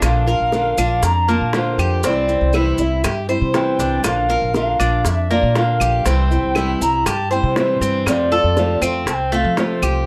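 A pure, clay-toned alto ocarina sings the melody with expressive vibrato from a distance over a sunny, danceable Cuban son and guajira groove at 119 BPM in F major, backed by bright fingerpicked flamenco guitar, a metallic double-strung tres in arpeggios, a dark, thumpy pizzicato upright bass up front, tight high-tuned bongos, woody claves and grainy maracas, all moving through Bb, C and F in a small room excerpt cut from a longer piece.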